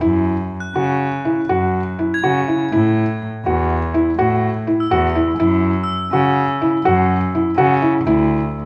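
A hypnotic, pensive piece of contemporary chamber music in 11/8, this short excerpt moves at 246 beats per minute counted in eighths, with a straight feel and a light reverb. A felt-muted upright piano sits up front with soft, intimate arpeggios and audible action noise, while a dark, reedy cello carries the bass line with a nasal gut-string tone in period style. High, shimmering crotales struck with brass mallets add a faint bell-like texture from 0.6 to 6.3 seconds over harmony that settles on a Dsus2 chord near the end.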